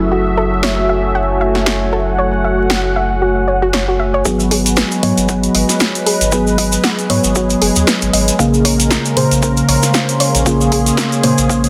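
A swung 116 BPM deep house groove in 4/4, hypnotic and deep, opens on an F#m7 with a mellow FM electric piano stabbing through chorus, phaser and digital delay over a smooth detuned analog pad, a round sine sub bass, a warbling lo-fi tape-like pad and a soft, dark pluck arpeggio, all pumping under sidechain, while a punchy analog drum machine's overdriven hi-hat and snare join at 0.6 s before an overdriven electronic kick and grainy vintage cabasa arrive at 4.3 s to start a build-up that climbs through G#m7 and A#m7 in a lush hall reverb, dense limited mix and vinyl crackle.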